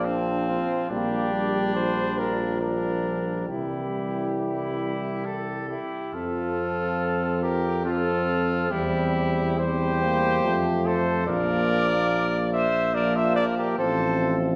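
A warm, punchy cornet with light vibrato carries the melody in this stately, triumphant brass quintet excerpt in F major, moving at a rubato 70 BPM in 3/4. A bright, distant trumpet traces a second line above an up-front tuba bass, while a clear euphonium and a mellow, soft-attacked French horn with a vintage tone sit in the background as accompaniment. The whole ensemble rings in a wet concert hall reverb, and the harmony settles onto F at 6.1 seconds.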